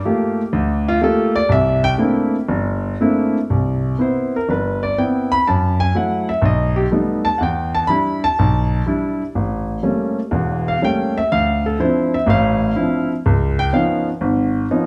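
A solo grand piano opens the recording at 0.1 s and carries the whole fragment, which is cut from a longer piece of solo jazz in 4/4. The mood is swinging and sophisticated, with a swung eighth-note feel that is loosened by rubato. The piano sounds intimate and natural, with long sustain and audible action noise, and it sits up front in the mix. Its range stretches from E1 up to B5. From 3.5 s the harmony moves through rich jazz chords, from Cmaj7 and F#m7 through Baug7, A7b9 and Dm9, before arriving on Db9 at 13.3 s, shortly before the close at 14.9 s. A moderate, large studio reverb gives the piano a sense of the live room around it.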